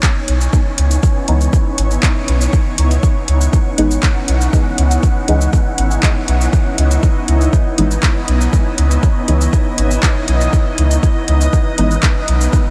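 Dub techno at 120 BPM, hypnotic and meditative, resting on a single C#m9 chord in this short cut from a longer piece. An overdriven electronic kick sits up front beside a round, soft sub bass entering at 0.3 seconds, while a deep house kit of cabasa, handclaps and metallic hi-hats carries overdrive and dub echo. A cloudy, blurred granular pad and a breathy, wind-like noise texture pump with the sidechain alongside a dark, nasal chord stab drenched in chorus, phaser and dub echo from 1.3 seconds, all in a lightly reverberant room.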